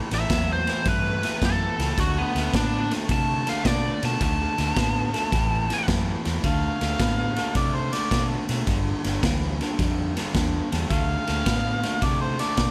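A twangy, slightly broken-up rhythm guitar opens this rollicking, gritty electric blues shuffle with a picked riff. A biting, overdriven lead guitar solos from 0.1 to 5.9 seconds over a dark, foam-muted, round bass and a saturated garage drum kit of boomy kick, ride and snare that sits up front in a pumping stone room. At 6.4 seconds an amplified, overdriven harmonica takes the solo in a jazz style, full of vibrato, tongue slaps and scooped notes, all within a small room's ambience.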